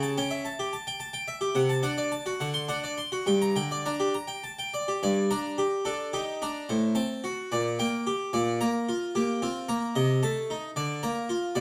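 Classical baroque-style suite movement in G minor, flowing and introspective in a rubato 6/8 at 66-76 BPM in dotted quarters, played by a solo harpsichord spanning G2 to C6 with a full, plucked Flemish-style tone from two sets of strings, close-miked and up front in a moderate stone room, moving from its opening phrase into a new section at 5.0 seconds before this passage from a longer piece breaks off at 11.6 seconds.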